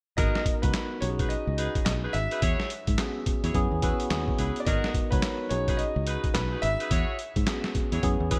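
From 0.2 seconds the whole band comes in together on this bouncy, punchy new jack swing cut, an R&B groove at 107 BPM in 4/4 with a 62% swing on the sixteenths, tuned to A4 = 438 Hz. The sampler-style drum kit sits up front and loudest, with a gritty, pitched-down, tape-warm character, a thumpy kick, a medium-tuned snare, handclaps and hi-hat, re-recorded in a small room and treated with gated reverb. A dark, round, foam-muted fingered bass anchors the low end while a clean tine electric piano, heard through its built-in speakers, fills in the harmony and a tight, vintage jazz-style horn section with light vibrato punctuates with stabs. On top, an intimate concert grand carries the melody with long sustain, audible action noise and a subtle chorus, dropping out at 7.7 seconds as the rest play on to 8.4. The chords move through G#m9, B6, E69 and F#9sus4 before circling back, all framed in a bright 1980s-style digital production with light reverb.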